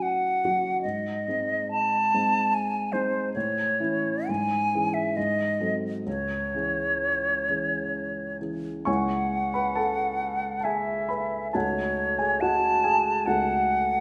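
Romantic classical music for flute and grand piano, this serene, lyrical fragment of a longer piece moves in a rubato triple metre. The pure-toned silver flute sings the melody with vibrato and a soft attack, while the dark, mellow concert grand accompanies with deep bass and audible action noise, both up front in a reverberant recital hall, as the music moves into a new section at 8.9 seconds.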